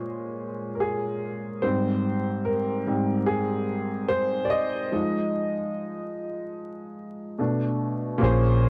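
Hazy, nostalgic hip hop at 73 BPM with a swung sixteenth-note feel, where a woody, smooth upright piano with long sustain sits up front, plays alone from 0.0 s through Bbm9, Abmaj9, Fm7 and Bm7 chords, and carries a cassette tape color, until a dark, round, foam-muted electric bass enters on a low Bb at 8.2 s, all inside a moderate plate reverb, worn warbling tape with pitch drift and vinyl crackle.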